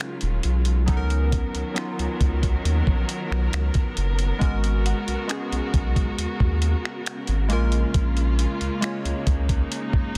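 Sensual and late-night, this slow contemporary R&B cut moves through minor-seventh and suspended chords. Round, detuned analog keys with chorus and lush, distant bowed strings with vibrato carry the harmony, while a gritty, compressed sampler-style kit of finger snaps, hi-hat, thumpy kick and softly clipped snare sits up front beside a deep, thick saturated sub bass entering at 0.2 seconds. A very quiet glassy wavetable pluck flickers briefly from 4.9 to 5.7 seconds, all set in a dry, dense and heavily limited modern mix.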